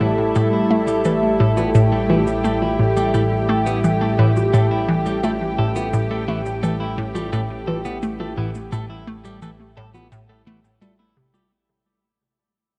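A lush, airy sawtooth pad with chorus sits up front in this mysterious, expansive excerpt of ambient, sequencer-driven space music at 86 BPM in 4/4. It holds sustained chords over an A7(no3) harmony while a hollow, nasal, bouncy square-wave pluck plays a riff through chorus and analog delay, a clean, picked twelve-string electric guitar fades in with arpeggios through analog delay, a warbling, vintage analog drone anchors the bass on A1, and electronic shaker and bongos enter at 0.4 seconds. The whole thing is bathed in a huge, wet reverb with a cassette-tape haze and a fade-out beginning at 4.1 seconds.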